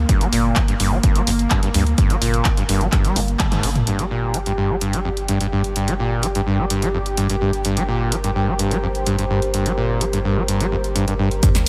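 Acid house at 127 BPM in G minor, hypnotic and raw, built on a squelchy, gritty acid bass riff up front with tube saturation, a filter sweep, subtle chorus and digital delay, over a round, deep analog bass and a lush, detuned unison pad with chorus and phaser, all three pumping to the sidechain. A punchy, tape-warm electronic kick drives the opening until 3.5 seconds alongside an analog drum machine of handclaps, hi-hat, shaker, snare and toms, with a drum fill and band accent before the second section begins at 3.9 seconds. A moody, dark ambient pad with built-in reverb enters in the background at 5.1 seconds, and an impact at 11.4 seconds gives way to a sub drop as this cut from a longer piece ends.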